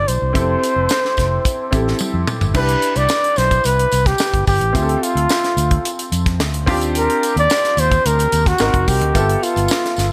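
Polished 1980s jazz-funk pop at 109 BPM in C major, breezy and urban, where an intimate, breathy flugelhorn with vibrato and scooped notes carries the melody up front over a clear baby grand piano with analog chorus, a dark, round fingered electric bass, a tight funk drum kit with a high-tuned snare whose fill at 2.0 seconds leads into a new section at 2.5 seconds, and a jingly tambourine in the background, all in light reverb as lush chords like Cmaj9, Dm9 and Ebmaj13 pass by in this short cut from a longer piece.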